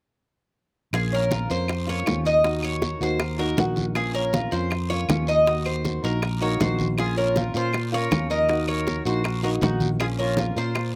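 A dry, open-air sound with little reverb frames this short, danceable cut of Cuban son and guajira, which carries a warm mood over two alternating minor chords. Up front, a mellow, metallic Cuban tres with paired, partly octave-doubled strings picks the melody. A second tres sits further back playing arpeggios from 1.1 seconds. A growly, amped fretless electric bass holds the low end with a bright, sustaining tone. A fingerpicked flamenco guitar with audible finger squeak supplies the accompaniment through a slapback echo. The percussion blends round, close bongos, soft-handed congas with a thin skin in the background, woody claves and a raspy guiro, and at 6.4 seconds an airy silver concert flute joins with a crisp attack, slightly unsteady vibrato and its own slapback echo.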